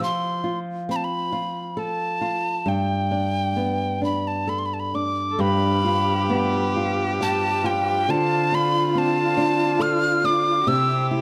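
Pastoral and nostalgic, this rubato Celtic slow air in three, cut from a longer piece, sets a breathy, chiffy, closely miked tin whistle melody with tongued notes and vibrato up front over fingerpicked flamenco guitar with audible finger squeak, joined at 5.3 seconds by a dark, bowed cello second line with expressive portamento and at 5.4 seconds by reedy, airy accordion chords in the background, heard within a moderate recital hall reverb.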